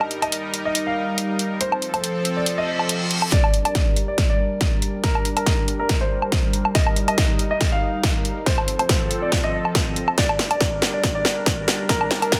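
A punchy, up-front electronic kick drops in at 3.3 s beneath a tape-warm dubstep kit of huge snare, metallic hats and woodblock, while a lush, detuned supersaw pad pumps against the sidechain under a filter sweep and a dark, mellow concert grand piano carries the melody through dub echo, with a reverse cymbal and riser arriving at 2.6 s to launch a chaotic, menacing half-time build-up of heavy wobble dubstep at 140 BPM in G minor, cut from a longer piece and mastered dense and heavily limited.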